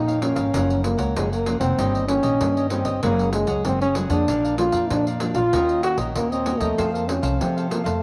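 Lively and nostalgic, this 96 BPM samba and choro excerpt in Bb minor features a breathy, mellow, close-miked trombone carrying the melody up front with light vibrato, over a crisp picked cavaquinho, a thumb-plucked classical nylon-string guitar in the background, a woody, growly pizzicato upright bass and a jingly, saturated pandeiro played with soft hands, all bathed in a moderate echo chamber reverb as the chords move from Bbm through Gbmaj7 and Ebm7 to F.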